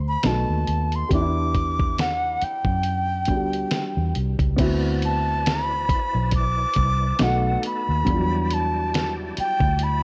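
Neo-soul R&B at a slow 69 BPM in E minor, sultry and soulful, with a swung sixteenth-note feel and a worn, warbling cassette-tape character that lends it a warbly pitch drift. A breathy concert flute carries the melody up front, close-miked with a crisp attack, reedy edge and vibrato. Beneath it, a round, foam-muted electric bass with tube saturation sits forward alongside a dusty sampler-style drum kit, gritty and compressed, with a thumpy kick, fat snare, hi-hat and crash. A natural-sounding baby grand piano fills in the accompaniment over harmony moving between B7 and Em9. At 4.6 seconds a clean tonewheel organ enters in the background, holding sustained chords through a slow rotary speaker with key click as the harmony shifts to D13 before returning to B7 and Em9, all under light digital ambience in this short cut from a longer piece.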